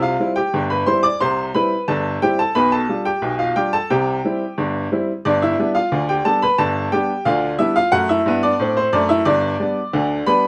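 A bright, woody upright piano sits up front in a moderate club reverb for this cheerful, jaunty ragtime excerpt in 2/4 with a straight feel, playing solo across a range from G1 to D6 as the harmony moves from C through G7/B and back before turning toward G by way of D7/F#.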